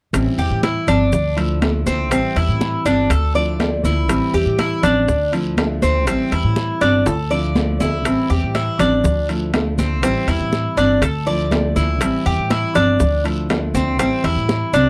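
Danceable and sultry, this excerpt of Cuban son and guajira moves at 121 BPM in A minor, rocking between Am7 and Dmadd9 chords. Up front, a bright, metallic Cuban tres picks arpeggios on its doubled strings from 0.4 seconds, over a woody, growly pizzicato upright bass and a full-bodied, fingerpicked nylon-string guitar. Ringing metal-shell timbales play throughout, a drum fill arrives from 7.1 to 8.1 seconds, and tight, very quiet bongos join hard-handed congas, a raspy guiro and grainy maracas, the last three sitting in the background of a dry, close 1970s-style studio sound with light reverb.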